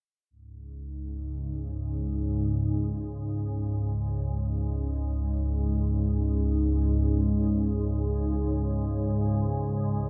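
An organ-like drone sits up front and carries this brief ambient fragment, entering at 0.6 seconds and holding until the cut at 10.1 seconds. Its tone blends sine and triangle colors with a metallic edge from ring modulation and a moving notch, layered in unison and thickened by an ensemble chorus and its own built-in reverb. Each note arrives with a slow attack, sustains, and fades on a long release, low in register around C#2 to G#2 and resting on a C#5 chord in free time, tuned to A4 = 438 Hz. A filter sweep runs across the drone for nearly the whole passage, reshaping its color. The mood is calm on the surface yet desolate and ominous, set inside a huge, dark ambient space with a long reverb tail.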